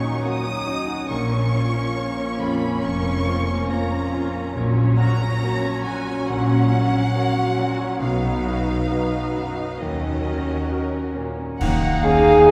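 Set back in a reverberant concert hall, this emotional, longing film-score fragment moves with rubato as a lush violin section sings the melody over a darker, woody second violin line, a brilliant grand piano with deep bass, smooth violas, a very quiet cello section, a bowed double bass section and soft-attack French horns holding sustained chords, until an accent at 11.6 seconds brings in a distant clarinet, bright clash cymbals with bass drum, and at 12.0 seconds a pure, hollow flute.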